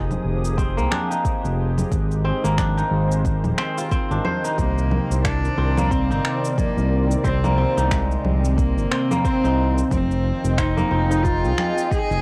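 Earthy and mystical, this organic downtempo excerpt moves at 90 BPM in 4/4 with a swung sixteenth feel, set in C minor and cut from a longer piece. A soft-edged analog pad holds sustained chords through lush chorus, sidechain pumping and shimmer reverb, while a bright, fingerpicked kora rings out arpeggios softened by a low-pass filter, analog delay and cassette tape. Up front, a smooth gliding synth bass with portamento and vibrato carries the low end, thickened by transformer saturation and pumping with the sidechain. Tape-warm electronic congas, shaker and finger snaps sit in a small room reverb, joined at 0.6 seconds by a deep, overdriven electronic kick drum. At 4.6 seconds a rich, close bowed cello enters with the melody, its even vibrato trailed by tape echo and shimmer reverb. The harmony moves from Fm7 through Abmaj7 and Cm7 back to Fm7, and the whole has the intimate, slightly worn character of a home cassette recording in a modest booth.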